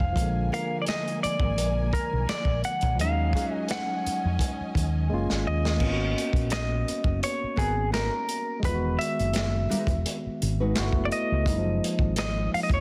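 A clean, compressed semi-hollow electric guitar carries the melody up front, its hollow-body tone sitting high over a relaxed neo-soul and R&B groove at 85 BPM with a light sixteenth-note swing. Beneath it, a barky tine electric piano played through a combo amp supplies the accompaniment, while a round, punchy fingered electric bass anchors the low end. The gritty, saturated breakbeat kit sits forward in the mix, with tight kick, medium-tuned snare, handclaps, hi-hat and dark crash cymbals, and it plays a drum fill at 5.1 seconds. A lush, bowed string section with expressive vibrato holds dark sustained chords until 5.8 seconds. A woody, fingerpicked nylon-string guitar with old strings and slapback echo weaves a second line until 10.7 seconds, over a warm progression that moves through chords such as D#m11, F#maj9, G#m11 and Emaj9 inside a dense, heavily limited master with light studio reverb.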